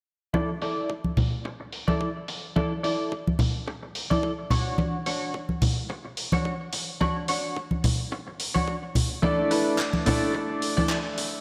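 A bright, twangy clean electric guitar riff opens this sunny, feel-good nu-disco excerpt at 108 BPM in A major, its picked, scooped tone softened by analog chorus, delay and a low-pass filter, over hard-handed congas up front, a very quiet thumpy kick and a gritty, overdriven soul-style kit of handclaps and filtered hi-hats with a slight 16th-note swing. The harmony moves from Asus4 to Dmaj7 and back, and at 9.2 s a clear but worn grand piano joins with sidechain pumping and delay. The whole mix is soaked in a lush hall reverb, giving it a dreamy glow.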